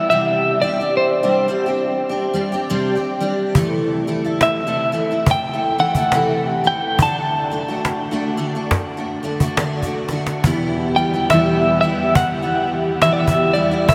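Acoustic folk at a slow 70 BPM with a gentle swing, this reflective, melancholic excerpt moves through Csus2, Am/C and D before settling on Em, all bathed in a huge, dreamy ambient reverb. A clean, compressed electric guitar carries the melody up front with tremolo and analog delay, over a bright, full-bodied picked steel-string acoustic guitar thickened by ensemble chorus. A snappy cajon with snares joins at 3.5 s and plays a fill at 9.8 s, and at 10.4 s a warm string section enters in the background with soft-attack, sul tasto bowing and vibrato.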